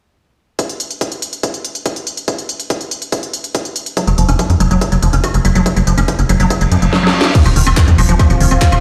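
A straight 4/4 pulse at 142 BPM drives this psychedelic trance fragment, with a tight, up-front electronic kick and a layered garage kit of cracking snare, crisp hats, handclaps, woodblock and crash entering together at 0.6 s, both tape-tinged and re-recorded in a large room. At 4.0 s a squelchy, resonant liquid acid bass riff arrives, carrying filter sweeps, chorus, tape echo and sidechain pumping. At 4.1 s a punchy, nasal sawtooth-and-square sequencer bass with tube saturation joins and sits prominently beneath it. The harmony moves from Gb5 to F5, and a reverse cymbal and a short drum fill lead into the next section. From 7.6 s a very quiet, morphing wavetable pad holds an F3 chord while a soft, breathy pad with a noise layer and pumping chorus floats above it. The mood is driving and psychedelic, and the whole mix plays back through a big sound system in a bare room under light reverb.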